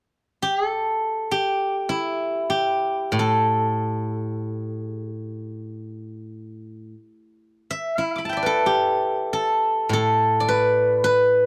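Flowing and pastoral, this short fragment of Chinese traditional solo plucked-string music in free time features a steel-string zither played with fingerpicks, its bright, silvery tone ringing up front across a span from A2 to D6 from 0.4 to 11.5 seconds, captured in a dry, close 1970s-style studio sound with little reverb.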